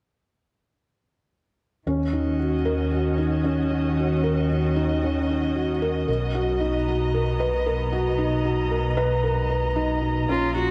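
Cinematic, melancholic electronica in a straight 4/4, cut from a longer piece, where a felt-muted upright piano plays an intimate riff through digital delay, its thick felt and audible action noise up front, over a deep, beating detuned saw bass and the veiled, con sordino sustained chords of a distant muted string quartet, all entering at 1.9 s. The harmony moves from Ebm7 to Bmaj7 at 6.1 s, and at 10.3 s a rich, close viola adds a brief expressive melody with vibrato and portamento. A dark production sets the parts on a moderate scoring stage reverb with studio ambience.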